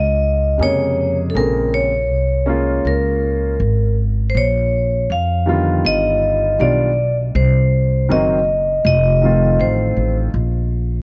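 A bright, ringing vibraphone struck with hard mallets carries the melody up front in this cool, nocturnal jazz-hop excerpt at 80 BPM in Bb dorian, with a lightly swung 16th-note feel. A woody pizzicato upright bass sits beside it from the start, and a warm upright piano enters at 0.6 seconds with accompaniment. The chords move from a minor-ninth opening through a darker turnaround. The vibraphone drops out at 10.2 seconds and the piano follows at 10.3 seconds, leaving the bass to carry on until 11.0 seconds, all under light studio reverb and the worn, warbling pitch drift of old cassette tape.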